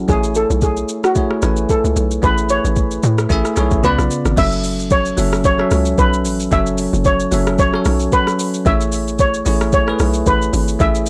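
A shimmering steel pan carries the melody over bell-like tine electric piano accompaniment and a hollow, bouncy log drum bass in this soulful, deep amapiano cut, moving at 112 BPM in F# minor with a gentle 16th-note swing. An electronic R&B drum kit sits up front with a soft kick, crisp hats, rim clicks, shaker and crash, its overdrive adding bite, while the pan trails an analog delay. The harmony moves from Amaj7 through C#7b9 into a drop at 4.4 seconds on F#m7, all captured in a dry, gritty recording with transformer saturation.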